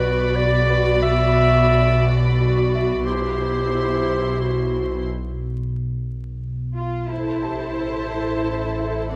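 A warm, vintage clarinet sits up front until 5.1 seconds in this mysterious, eerie cinematic passage in 3/4, drifting from Bm through C/B to Am over a deep, ominous, rumbling drone, with a lush, expressive violin section carrying the melody, a distant second violin section stopping at 5.0 seconds, a focused, close viola section, dark cellos and clear double basses in the background, and a very quiet, intimate grand piano with audible action noise, all bathed in a wet scoring-stage reverb with vinyl crackle.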